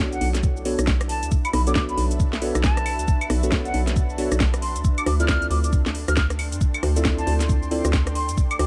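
Dusted with vinyl crackle, this moody, late-night excerpt of two-step UK garage at 136 BPM in B phrygian swings its 16ths over a knocking, tape-warm electronic kick and a garage kit of claves, metallic hats, rim click, shaker and cracking snare, while a hollow, bouncy FM bass sits up front beneath deep, nasal chord stabs with chorus and digital delay, a very quiet silky string machine, a cloudy granular pad that pumps and blooms with reverb in the background, and an airy, distant concert flute melody with vibrato and delay, all moving from Bm9 to Dm9 at 4.6 seconds.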